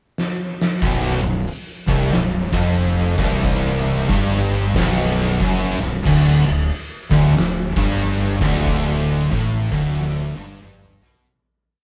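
Heavy and ominous, this short stoner and doom metal piece crawls along at 92 BPM in 4/4 with a swung eighth-note feel, rooted in B minor. An oversized, low-tuned drum kit opens with a fill at 0.2 seconds, its fat snare, punchy kick, crash, hi-hat and toms sounding gritty and saturated up front in a half-time big groove. At 0.8 seconds the riff arrives: a bright, double-tracked distorted electric guitar plays a picked single-note line, backed in the background by two thick fuzz guitars, one dark and one warm, moving between B5 and D5. A growly, overdriven fuzz bass, fingered and heard both direct and amped, doubles the guitar riff in a quarter-note figure down to B0. The band plays live together in a stone room with moderate reverb; a fade-out begins at 8.7 seconds, and another drum fill from 10.0 seconds carries the piece to the close at 11.3 seconds.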